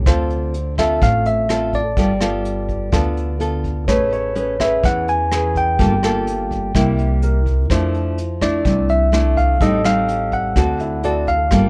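A straight 4/4 bossa nova at 126 BPM, this breezy, sophisticated clip sets a fingerpicked nylon-string guitar up front over woody pizzicato upright bass and a vintage brush kit with tight kick, hi-hat and rim click in a small pumping room, while a clean tine electric piano carries the melody and a concert grand joins in the background from 4.1 seconds, all in a dark, dry production moving through Dm7, G9, Amaj9 and on to D7.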